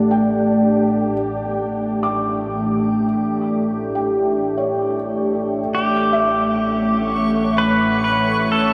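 Warm and peaceful, this ambient excerpt drifts at 65 BPM in 3/4 in A mixolydian, with an up-front, detuned wavetable pad holding sustained chords under a filter sweep with phaser and shimmer reverb, a felt-muted upright piano playing soft, intimate arpeggios with audible action noise, and a distant bowed double bass section fading in on a low A, before a clean pedal steel guitar with fingerpicks and slide enters with the melody at 5.7 seconds and a bright, reversed granular texture joins at 6.6 seconds, all set in a huge, wet reverb.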